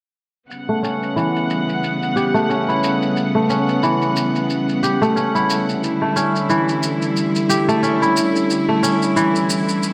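A bright 1980s-style digital production bathed in a wet plate reverb frames this earthy organic downtempo passage, cut from a longer piece, at 90 BPM in 4/4 with a 57% swing on the sixteenths in A mixolydian. A dark, intimate chamber string section holds soft-attack sul tasto chords up front with light vibrato from 0.5 s, while a mellow, fingerpicked kora rings out crisp arpeggios through delay from 0.7 s, both parts shaped by low-pass filtering and filter sweeps. A layered, tape-warm electronic shaker sits quietly beneath them as the harmony moves from A13 to Em7 at 5.8 s.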